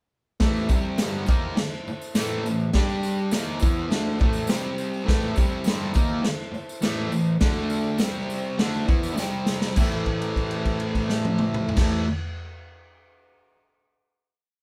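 Gritty and raw, this short garage rock piece in A minor moves at 102 BPM in a straight 4/4, with a bright, double-tracked fuzz guitar power-chord riff and a vintage acoustic drum kit with a boomy kick and dark cymbals up front, driving a garage stomp groove from 0.4 seconds. An overdriven combo organ with light vibrato holds mellow triad chords in the background, while a jingly tambourine sits back in the mix until 10.0 seconds, all caught as a band playing live in one room with light reverb. A drum fill at 9.2 seconds leads into a final A minor chord held from 9.8 seconds.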